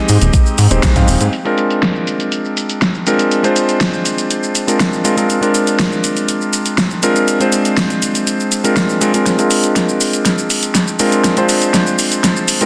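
Nu-disco at 121 BPM in a straight 4/4, this groovy, feel-good excerpt sits in Bb mixolydian and is cut from a longer piece. A vintage electric grand piano carries the accompaniment throughout, its clangy low end and long sustain shaped by sidechain pumping, a low-pass filter and delay, moving from Abmaj7 to Bb9 at 1.3 seconds. A fat, detuned analog bass with a sawtooth and square-wave edge and ring modulation appears only briefly at the opening, alongside a knocking, overdriven electronic kick that plays until 1.1 seconds, with a band accent landing at 0.8 seconds. The layered pop kit keeps hi-hat, shaker and a fat snare running up front, overdriven and filtered, its hats warm. From 9.3 seconds a drum fill and a filter sweep on the piano drive a build-up to the end, all set in a moderate echo-chamber reverb and a dense, heavily limited modern master.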